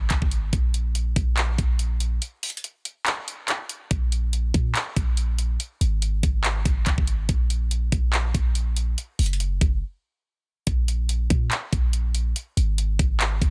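The recording is dry, dense and heavily limited, with both parts sitting up front in a modern master that feels close and crowded. This dark, melancholic trap cut, taken from a longer piece, runs at 142 BPM in 4/4 with a half-time feel. A clean, sine-like 808-style bass carries the low end with a fast attack and a deep, boomy decay, its tone dark. The electronic trap kit brings a knocking kick, metallic hi-hats and handclaps, its sound tape-warm and roomy from being re-recorded in a small space. Breaks interrupt the groove at 2.2 and 9.8 seconds, and a new section arrives at 10.7 seconds to carry the piece to its close.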